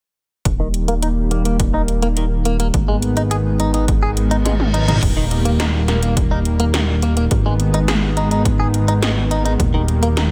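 Nostalgic and uplifting, this synthwave excerpt moves at 105 BPM in Eb major, with a lush, detuned unison pad and a glossy, pulse-wave chorused synth bass, both pumping with sidechain, over punchy, tape-warm electronic kick and 80s pad drums whose gated snare and toms sit against metallic hats. A bright, twangy clean electric guitar plays a riff with subtle chorus, low-pass filtering and delay, as filter sweeps move through the bass, pad and guitar in the opening half. A reverse cymbal at 4.3 seconds and a drum fill lead into the second half at 5.0 seconds, where the harmony again alternates between Eb and Abm.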